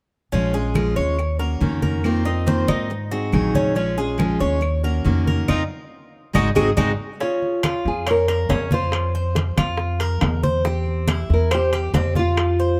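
Latin Cuban son and guajira with a sultry, danceable feel, this short cut opens with a bright picked steel-string acoustic guitar up front, a metallic double-strung Cuban tres playing arpeggios, a growly pizzicato upright bass and low-tuned thick-skinned congas, with woody claves joining moments later, over a Bbm7 to Ab7 vamp, before the band accents from 5.5 to 7.2 seconds and a fingerpicked nylon-string guitar takes the melody at 7.2 seconds alongside tight, high-tuned bongos, with ringing metal-shelled timbales entering shortly after, all in light reverb.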